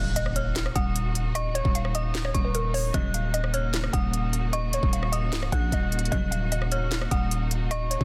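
A faint electronic impact opens this eerie, hard-hitting half-time trap excerpt alongside a hollow, bouncy square-wave pluck melody and a warbling, inharmonic FM bell line, both treated with chorus and delay, over lush bowed studio strings holding sustained chords and a growling, buzzy 808-style bass up front, before a knocking trap kit of kick, sharp snare, crisp hi-hats, handclaps and rim clicks enters at 0.2 seconds and brief delayed symphonic string stabs sound in the background at 2.9 and 6.1 seconds, set in a dry, dense and heavily limited mix.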